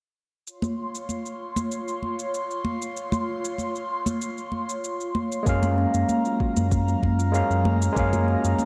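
Sunset chillout in a sunny, relaxed mood, moving in a straight 4/4 and cut from a longer piece. An airy, breathy pad with chorus and phaser holds sustained chords from 0.5 s, joined by a tape-warm electronic cabasa and close, dry congas struck with hard hands. At 5.4 s a barky, overdriven tine electric piano steps up front with delay, gritty as if through a combo amp. A woody kalimba follows with ringing arpeggios in the background, also treated with delay. At the same moment a deep, round sub bass and a soft electronic kick anchor the low end as the harmony moves from Dbmaj7 to Gbmaj7. The bright 1980s-style digital production sits in a moderate plate reverb.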